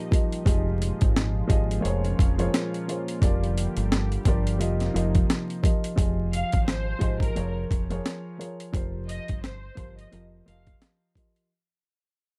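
Dry and dusted with vinyl crackle, this moody, dark boom-bap hip-hop excerpt rides a gritty, overdriven sampler-style drum kit with a thumpy kick and a high-tuned snare up front, a round, fingered dub bass, and a mellow concert grand piano colored by cassette tape, while a smooth, chorused sawtooth pad sits in the background until 6.0 s, and a distant, lush violin section with vibrato, portamento and delay enters at 6.3 s as the track fades out.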